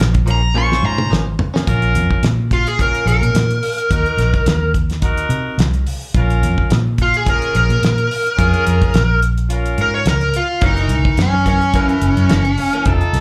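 A smooth, overdriven lead guitar with slapback echo sings a mournful, soulful melody from 0.3 seconds in this straight-eighth soul blues excerpt in Bb minor at 107 BPM, over a round, foam-muted fingered bass, a dry 70s drum kit with a fat snare and tight kick, sustained chords from a clear horn section with light vibrato entering at 0.6 seconds, and twangy, compressed clean guitar stabs through a phaser that open the piece and return at 10.6 seconds, all heard as a live gig through a small club's PA and reverb.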